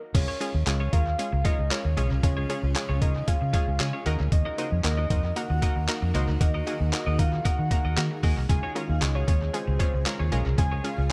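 Dance-pop at 115 BPM in Db major, summery and carefree, with a mellow, wave-folded octave-layered synth lead carrying the melody over a warbling sawtooth analog pluck that pumps with the sidechain, a cloudy, blurred granular pad entering at 0.5 s, a clean, twangy twelve-string electric guitar riff in the background, a dark, punchy foam-muted fingered electric bass up front, and a gritty, pitched-down trip hop sampler-style kit with a thumpy kick, handclaps, hi-hat and crash, the harmony moving between Db and Ebm in an echo-heavy digital ambience with dub echo trailing the lead, pluck and guitar.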